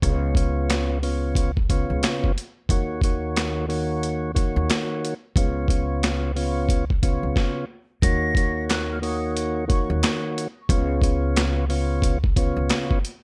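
The recording is dry and close, with little room sound, and this short cut from a longer boom-bap hip-hop track feels tough and dark, its beat carrying a lazy swing. A gritty, compressed, pitched-down sampler kit sits up front, with a thumpy kick, a high-tuned snare, hi-hat and handclaps that carry the ring of a large room. A clean tonewheel organ, also up front, holds the chords through a slow rotary speaker and a touch of cassette-tape grain, while a woody pizzicato upright bass with gut strings grounds the low end. After a brief stop at 7.4 seconds, a breathy, mellow jazz flute enters at 8.0 seconds with a crisp, chiffy attack, vibrato and tape echo, sounding distant and expressive for a short phrase. Very quiet finger snaps join at 8.7 seconds, adding a small human touch to the groove.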